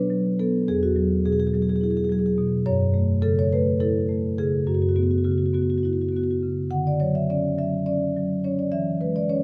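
This contemporary classical piece for solo marimba is reflective and flowing, a 9.4-second passage cut from a longer work. It moves at 210 beats per minute counted in eighths, in a straight 7/8 metre. The marimba, played with soft mallets, sits up front with a mellow, round and dark tone, ranging from E2 up to F#5. The harmony drifts from B minor through Eadd9, F#m7 and F#7sus4 before settling on Dmaj7 and E6 near the end. Close, detailed microphones capture the instrument in a light reverb, giving the sound an intimate, smooth presence.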